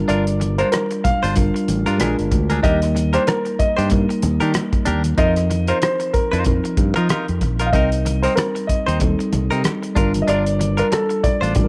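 A 94 BPM groove in 4/4 with a light 16th-note swing drives this smooth, cinematic slice of lush 1970s-style soul, built over a Gm7, Bb7, Ebmaj7, F7sus4 and Cm7 progression. A cloth-damped, thuddy drum kit with tight kick, hi-hat and rim click sits up front beside a punchy, bright fingered bass. Meanwhile a worn, slightly out-of-tune tine electric piano comps, a twangy, compressed clean guitar picks a riff, a concert grand with deep bass and short sustain carries the melody, and very quiet, low-tuned congas add a soft, vintage pulse, all set in light studio reverb.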